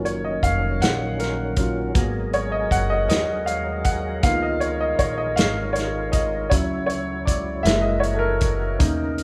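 Set in a slow, straight 6/8, this uplifting, reverent gospel fragment features a natural-sounding upright piano soloing throughout, over sustained chords from a lightly overdriven, percussive tonewheel organ with slow rotary speaker and chorus vibrato, a growly, woody pizzicato upright bass, and an up-front soul drum kit of hi-hat, tight kick and snare, captured as a band playing live in one large, moderately reverberant studio room.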